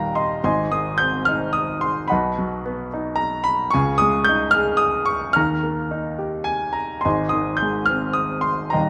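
A warm grand piano carries this short classical excerpt alone, its intimate, natural tone sitting up front with the sound of the action audible beneath the notes. The mood is sunny and relaxed, moving in a lyrical 3/4 at 108 BPM with a rubato feel that lets the phrases breathe. A brief fill opens the recording before the main passage settles in at 0.4 seconds, and the playing spans from a deep Eb1 up to a bright G6. The harmony travels from Ab through B, Dbsus2 and Ebadd9 before returning to Ab at 7.1 seconds. A moderate recital hall reverb surrounds the instrument, giving it a sense of space while keeping its detail close.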